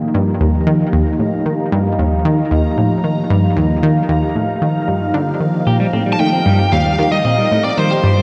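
Awash in a lush hall reverb with a dark production, this short excerpt of ambient, sequencer-driven space music feels expansive and cosmic, moving at 114 BPM in a straight 4/4 over an Ebsus2 chord. Up front, a round, detuned sawtooth analog pluck plays a low riff with a fast attack and decaying filter, thickened by chorus and analog delay. Beside it, a swirling phased analog pad holds sustained chords, its detuned sawtooth tone evolving through a moving notch with a slow attack and long release. Far in the background, a bubbling stepped-filter texture sits on a single high note, resonant and detuned, fading in across the whole passage with its own reverb. A clean, hollow-bodied semi-hollow electric guitar enters at 5.7 seconds with fingered arpeggios through analog delay, and at 6.1 seconds a bluesy, distorted lead guitar, picked and up front, begins a melody.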